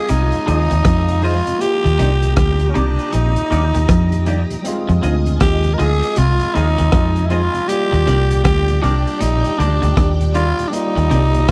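A growling tenor saxophone carries the melody from the very start, raspy and up front with a light vibrato and a tape echo trailing its phrases. Beneath it, a swirling, warbling string machine with ensemble chorus and phaser sustains a second line in the background, and an overdriven tine electric piano barks through a combo amp. This tender, sweet lovers rock reggae moves at 79 BPM in 4/4 with a swung sixteenth-note feel in Eb major, alternating between Fm7 and Ebmaj7. At 0.1 seconds the band joins: a round, foam-muted fingered bass sits prominently, a crunchy breakbeat kit adds a punchy kick, rim click and hi-hat with saturated grit and a rolled-off top, and a twangy, scooped electric guitar plays a very quiet low riff. A mellow tonewheel organ with a slow rotary speaker murmurs faintly from 0.3 seconds, and a bright, clean semi-hollow guitar adds compressed, phased stabs from 0.5 seconds, all captured with a dry, close 1970s-style studio sound in this cut from a longer piece.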